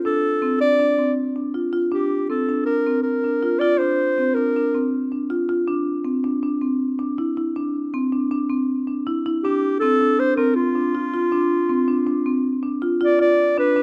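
Close, detailed microphones and a light reverb give this short contemporary instrumental excerpt an intimate, clear sound, with both instruments placed up front. At 160 BPM in a straight 5/4, a marimba played with medium mallets runs arpeggios from start to finish, its tone dark and smooth in a compact range between C4 and F4. A mellow classical-style clarinet carries the solo melody with a soft attack, falling silent at 4.9 seconds and returning at 9.4 seconds. The harmony moves from Dm7 to C, then to Csus4 before settling on Dm, giving the piece a hopeful yet restless mood. Tuned slightly low at A4 = 438 Hz, the passage feels like a fragment lifted from a longer work.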